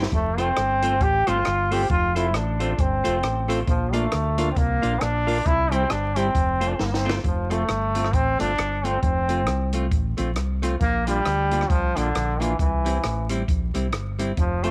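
Upbeat and cheerful, this swung ska excerpt at 135 BPM in F major features a brilliant, roomy trombone carrying the melody up front over a dark, clean hollow-body jazz guitar accompaniment, a round, punchy fingered electric bass, and a dry compact cocktail drum kit with a high-tuned snare and a drum fill from 6.8 to 7.2 s, while fat, lightly overdriven tonewheel organ stabs with key click and a stopped rotary speaker sit in the background until 7.2 s, returning briefly at 14.6 s, the whole mix framed by spring reverb, small room ambience and vinyl crackle.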